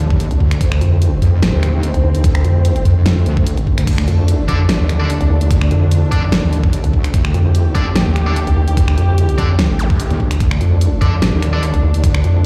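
Heavy wobble dubstep at 147 BPM in a half-time 4/4 feel with a light swing, this aggressive, chaotic excerpt sits in D phrygian and is cut from a longer piece. Two up-front wobble basses drive it from the start: one heavy and sawtooth-edged with resonant, saturated unison tone, the other nasal and dark with a formant-filtered vowel sweep, both thickened by chorus and overdrive. Beneath them a hard-hitting electronic kick and a layered dubstep kit with a huge snare, crisp hi-hats, finger snaps and crash cymbal carry a tape-tinged punch. A dark, woody string section holds lush bowed chords with vibrato under the din, pumping against the sidechain and softened by a low-pass filter. From 4.5 seconds a high-gain distorted guitar cuts in with brilliant picked stabs, roughened by 12-bit sampler grit and trailed by dub echo, and a brief electronic zap flashes at 9.8 seconds. The mix is dry and close yet played through a big sound system in a bare room, so a large reverb surrounds the whole loud, crushing sound.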